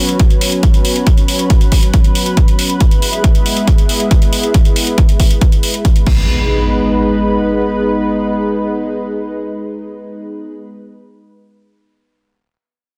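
A lush, detuned unison pad opens this short excerpt of uplifting trance, holding sustained chords with a slow attack, a thick sawtooth-and-square body, a warbling chorus, a touch of vintage 12-bit grit and a sidechain pump. The mood is emotional and bittersweet, set in G# minor at 138 BPM in a straight 4/4, with the harmony moving from Bsus2 to E and then to G#m. A punchy, up-front electronic kick and a layered techno kit with metallic hi-hats and crash cymbal drive the opening, both carrying the colour of a small room. The drums stop at 6.2 seconds, and an electronic impact arrives at 6.1 seconds to mark the shift into a new section, where the pad carries on with the impact. The sound is dry, with little reverb, and the master is dense and heavily limited in a modern style.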